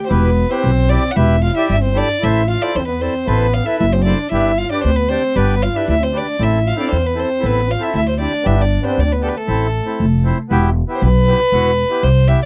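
A bowed, gut-string violin sings the soulful melody up front in this festive klezmer passage in A minor, cut from a longer piece, which starts at 116 BPM in 2/4 and speeds up throughout, over a close-miked trombone second line with slapback echo that drops out at 10.2 s, a reedy, band-limited vintage accordion and a woody, growly pizzicato upright bass, in a dry, close 1970s-style studio sound.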